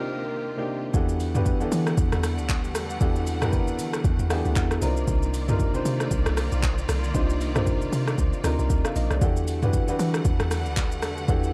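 Amapiano in E minor at 116 BPM with a swung 16th feel, soulful and hypnotic, cut from a longer piece and tuned to A4 = 437 Hz. A brief break opens with a breathy, whispered alto saxophone touch on Bb4 through digital delay, over an intimate grand piano with audible action noise and a lush, bowed string section pumping under sidechain. The drop at 0.9 s brings in a round, percussive FM log drum bass and an up-front, overdriven deep house kit of deep kick, handclaps, hi-hat, rim click, shaker and toms, while the piano takes a boxy fill at 4.0 s as the harmony moves between Cm11 and Em11, wrapped in a dark studio reverb.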